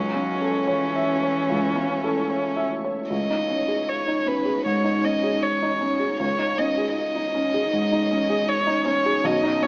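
Longing and fragile, this neoclassical piece for piano and strings moves in a rubato 4/4 at 74-80 BPM in C# minor: a close, intimate solo violin carries the melody with soft-attacked sul tasto bowing and light vibrato; a rich, floating cello adds a second line until 2.7 s; an up-front baby grand piano with audible action noise and short sustain supplies the accompaniment; and a very quiet ethereal pad of detuned sawtooth and triangle tones holds sustained chords, the whole heard through a moderate concert hall reverb with a small speaker sound.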